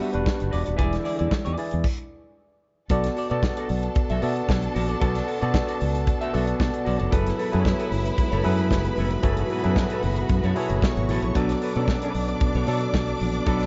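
A danceable, sultry disco groove in a straight four, heard as a short cut from a longer piece. A barky, lightly overdriven tine electric piano sits up front with a punchy-kicked studio drum kit and a round, foam-muted fingered bass, while a clean, scooped semi-hollow guitar with lush chorus and a smooth string section in the background fill out the accompaniment. After a brief stop from 1.8 to 2.9 seconds, a rich, expressive violin section enters on a second line above the band, carrying tape echo. The electric piano breaks out with a fill around 6.1 seconds, leading into the harmony's move from Bm7 to F#m11 and back. The production is dark and dry, with little room sound.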